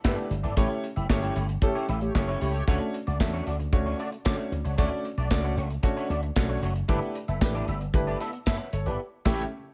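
Early-eighties boogie funk at 114 BPM in D major, feel-good and danceable, this short cut rides a punchy, bright slap bass through an envelope filter and a tight, dark studio drum kit with handclaps, hi-hat and crash cymbal, beneath an intimate grand piano with audible action noise, a twangy, scooped clean electric guitar riff with ensemble chorus, round, detuned synth brass that enters at 1.2 seconds and returns briefly in the final moment, and a jingly tambourine from 3.2 to 8.6 seconds, set in small-room ambience over G69, A7 and Dmaj7 chords with band accents.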